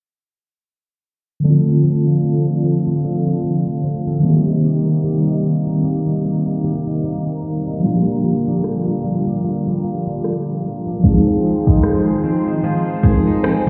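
Dreamy, romantic contemporary R&B in a swung 4/4, where a mellow, clean tine electric piano and a boxy picked acoustic guitar playing arpeggios enter at 1.4 seconds, a thick detuned pad with chorus and phaser settles into the background, and an overdriven electronic kit with soft kick and rim click arrives at 8.6 seconds, all heard muffled as if through a wall in a lush hall reverb under a filter sweep over chords moving from Dm7 to Fm7.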